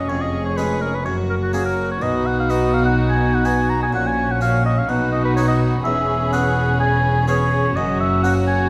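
From the opening moment of this lively, brilliant excerpt from a baroque-style concerto movement, a punchy oboe with vibrato sings the melody up front, with a very quiet, nasal studio violin section high above on the tune, while a chamber violin section with light vibrato carries a close second line, a dark viola section and a bright, plucked, single-strung harpsichord fill in the accompaniment, and rich gut-string cellos and reedy double basses ground the bass, all in a moderate concert-hall reverb.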